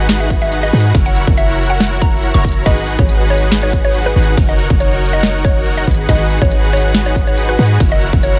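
Future bass with an emotional, lush half-time feel, where a woody, round FM pluck carries the melody through chorus, phaser and dub echo, while a huge detuned supersaw riff and a deep, boomy 808-style bass pump with it under sidechain, and a trap kit of crisp hats, ride cymbal and a sharp overdriven snare plays alongside a punchy layered electronic kick in a dry mix over G#m7, F#7 and D#m7/F# chords.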